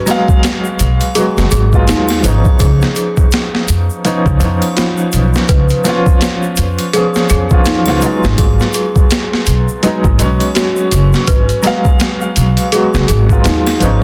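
Densely limited and set in a small room with light reverb, this dark, smoky trip hop fragment swings over gritty, overdriven, pitched-down boom bap drums with a thumpy kick and high-tuned snare, while a woody upright piano carrying tremolo and tape echo and a bell-like, delicate celesta spinning arpeggios through its own tape echo sit above an up-front gut-string upright bass played pizzicato from 0.8 s, with egg shaker and triangle tucked in the background.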